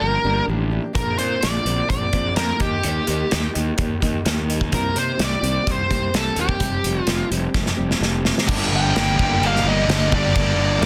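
A smooth, overdriven lead guitar carries the melody up front, its picked lines trailed by a slapback echo, in this brooding, angsty stretch of quiet-loud alternative rock cut from a longer piece. Beneath it, a dark fingerpicked steel-string acoustic guitar plays arpeggios in the background, finger squeaks audible, while a bright, growly fuzz bass sits punchy and up front over chords moving from Gm7 through Bbadd9, Eb, Cm7 and Fsus2. A loose indie drum kit joins at 1.0 seconds with a tight kick, medium-tuned snare, hi-hat and crash in a small, pumping room, and a drum fill leads into the louder passage. At 8.5 seconds the acoustic guitar drops out as the band lands on Gm: a bright, picked distorted guitar and a thick, dark fuzz guitar take up a riff, the fuzz one set further back, while a very quiet, lush string section adds woody, bowed chords with vibrato. The mix is dry, dense and heavily limited in a modern style.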